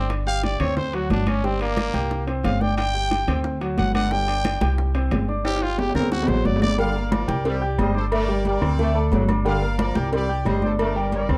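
A straight salsa groove from ringing congas, round low-tuned bongos and cowbell, metal-shell timbales and agogo bells and very quiet woody claves sits behind a thumpy gut-string upright bass and a clear, intimate grand piano, while a raspy, growling trumpet solos up front with plate reverb until 6.8 seconds, when a brilliant trumpet section and a bright trombone section enter in this fiery, passionate excerpt of a dark, warm latin production.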